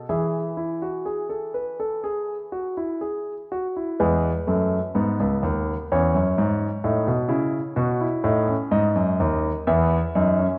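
A solo concert grand piano with a polished, up-front tone, deep bass and short sustain plays a lively yet stately baroque-style three-part fugue in E major at 63 BPM in 4/4, spanning C#2 to E5 in this brief passage cut from a longer piece. After an opening statement, a new section begins at 4.0 seconds, moving from E through a rootless F#7 over E and B7 before settling on an open E5 chord near 9.7 seconds. A moderate scoring-stage reverb surrounds the piano, and the worn cassette-tape character adds a warbly pitch drift.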